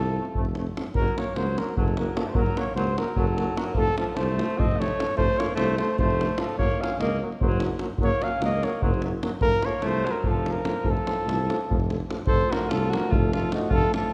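Driven by a deep, up-front davul, this restless, virtuosic Balkan brass band piece moves in a straight 7/8 at 296 BPM counted in eighths, in F phrygian dominant and tuned slightly flat, its harmony rocking between F and Gb. A close, soft-edged flugelhorn carries the melody up front with light vibrato, while a warm, distant alto saxophone plays a second line with vibrato, a smooth-topped euphonium and a brilliant but very quiet trombone add accompaniment from the background, and a roomy tuba holds the bass until 13.8 s. The clip is cut from a longer piece, set in a scoring-stage reverb, and shifts to a new section at 12.3 s.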